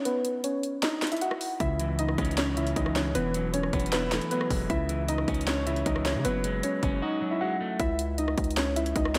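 A warbly, dusty pluck carries the melody up front, its detuned square and sawtooth tones softened by a low-pass filter, chorus and tape echo into a dark, lo-fi haze. This melancholic, brooding trap cut runs at 155 BPM in a half-time feel, in C# minor, opening on a filtered break before a distorted 808-style bass and an electric guitar on the edge of break-up enter at 1.6 seconds. The bass is heavy and saturated with a noise layer. The fingered guitar sits lower in the mix, warm and slightly broken-up beneath its own low-pass filter, moving through C#m, Eadd9 and F#madd9. An overdriven trap kit of hard-clipped kick, sharp snare, bright hats, handclaps and rim clicks punches up front, then drops out from 7.0 to 7.8 seconds before returning, and the guitar stops at 7.8 as the phrase returns to C#m. A lush hall reverb soaks the mix in a dreamy wash.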